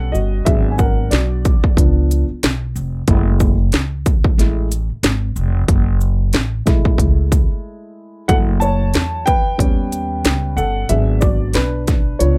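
A dry, close-sounding cut from a longer jazz-hop track, mellow and nocturnal, where a dark, slightly detuned vintage upright piano bathed in plate reverb plays solo over woody, thumpy pizzicato upright bass on gut strings and an up-front electronic drum kit with heavy kick, cracking snare, smooth hats and shaker, the swung groove pausing for a brief break at 7.6 seconds before the piano carries into a new section at 8.3 seconds over augmented and half-diminished seventh chords.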